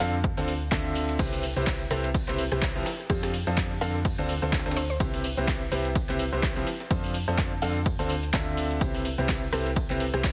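This uplifting, euphoric piano house cut at 126 BPM opens on a clear, intimate baby grand riff, its action noise audible and its long sustain up front, pumping against the sidechain and trailed by digital delay. A dark, round FM bass shares the pump from the first moment, and an electronic kick arrives at 0.2 seconds. The kick and a punchy analog drum machine, both pushed through overdrive, carry handclaps, hi-hat, shaker, ride and crash. Beneath them sits a gritty, very quiet sampler-style breakbeat kit with a high-tuned snare and tambourine, all riding a 56% swing on the sixteenths. From 1.9 seconds a woody, detuned synth pluck with chorus and delay sits in the background, and it returns near the close. The chords cycle through Dm7, Cmaj7 and F6 in C major, with light digital ambience and a heavily compressed, radio-like finish.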